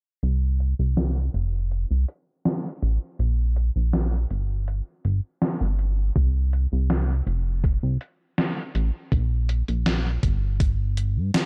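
A chorused synth bass and a gated 80s digital drum machine open this hazy, woozy vaporwave fragment together, the bass glossy and mellow with a fast-attack filter pluck, while the overdriven drum machine's hi-hat and gated-reverb snare sit up front. At 6.2 seconds a thumpy, overdriven electronic kick joins. A filter sweep runs across the whole passage, and the dry, gritty cassette sound keeps the room small and close.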